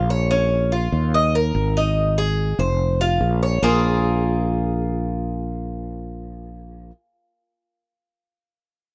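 A straight 4/4 pulse at 144 BPM drives this danceable Cuban son and guajira excerpt in Bb minor, where a bright, metallic Cuban tres with doubled strings picks arpeggios up front over a growly, direct fretless electric bass, both heard throughout the dry, close 1970s-style studio sound as the chords move from Bbm through Eb5, Ab and F5.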